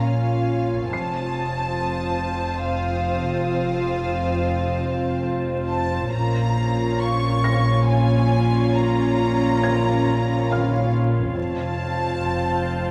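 In a slow, straight 3/4 at 69 BPM, this mysterious, eerie suspense film cue in Bb minor sets a dark, sul tasto violin section melody over intimate violas, a warm, floating cello section and a soft-attack double bass section, with an icy, crystalline chorused glass pad and a muted, mellow upright piano sitting in the background, while a rich, distant second violin section drifts in at 0.9 s, drops out at 5.7 s and returns at 11.4 s, all set in a wet scoring-stage reverb with a faint vinyl crackle beneath the Bbm7 and F chords.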